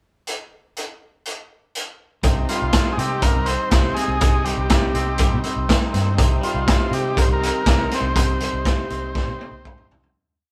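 A raw garage drum kit leads this short, trippy and mysterious psychedelic rock piece, sitting up front with a punchy kick, a medium-tuned snare, gritty saturation and a rolled-off top as it plays a pop groove across hi-hat, snare, kick and toms. The kit opens the piece alone with a pickup bar in a straight 4/4 before guitar, bass and a sustained organ enter on a C minor chord at 2.2 seconds. A twangy, clean electric guitar picks arpeggios through a phaser, while a dark, foam-muted bass adds a round, syncopated riff underneath. From 2.5 seconds, a vintage combo organ with heavy vibrato carries the melody in short, motif-based call phrases, backed by a second, overdriven organ holding a buzzy, very quiet sustained pad. The band sounds live in one room with light reverb, and the piece fades out from 8.2 seconds while the drums play a fill from 9.1 seconds.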